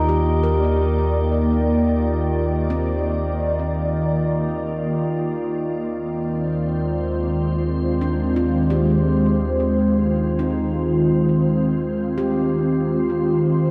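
This ambient piece in free time feels serene and luminous, drifting through a vast, echoing cathedral-like space with a long, wet reverb tail. Up front, a glassy, ethereal FM pad holds dark, full-bodied sustained chords with slow attacks and long releases, coloured by ensemble chorus, phaser and shimmer reverb. A meditative stainless-steel handpan, struck with the fingertips, plays ringing arpeggios through tape echo and shimmer. Beneath them, a deep, ominous drone rumbles and warbles with a vintage edge, while a nasal, evolving analog drone shaped by pulse-width modulation and chorus sits in the background. The harmony moves from Ebmaj7 to Fm/Eb at 5.1 seconds, and the synth drone fades out across the 13.7-second span, cut from a longer piece.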